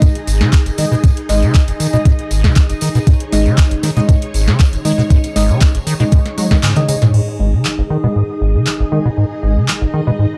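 A straight 4/4 groove at 118 BPM drives this hypnotic acid house piece, with a thumpy, up-front electronic kick and a booming analog drum machine of crisp snare, handclaps, metallic hi-hats, toms and crash, plus a jingly tambourine in the background, while a squelchy, resonant square-wave acid bass riff pumps beneath lush, phased string-machine chords and soft, detuned chord stabs with dub echo entering at 0.8 seconds, until a drum fill at 6.4 seconds leads the kick to fall away and filter sweeps move through the bass and stabs from 7.1 seconds, all in a dark, warm production with moderate studio reverb.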